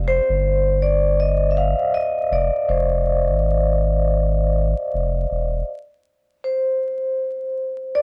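A cut from a longer lo-fi hip hop piece opens with a vibraphone played with medium mallets and a saturated sub bass, both up front over a dark production flecked with vinyl crackle and light reverb. The mood is hazy and nostalgic, moving at 80 BPM in 4/4 with a 60% swing on the sixteenths, in F dorian. The vibraphone's metallic, ringing tone carries a slow motor vibrato and is softened by cassette tape colouring and a low-pass filter as it plays in the range of C5 to F5 over an Fmadd9 chord. Beneath it, the deep, thick sub bass has a triangle-like core with a fast attack and sustained notes between E1 and Ab1. The bass stops at 5.6 seconds, and from 5.7 seconds a new section begins with the harmony dropping away, leaving the vibraphone alone until the end at 8.0 seconds.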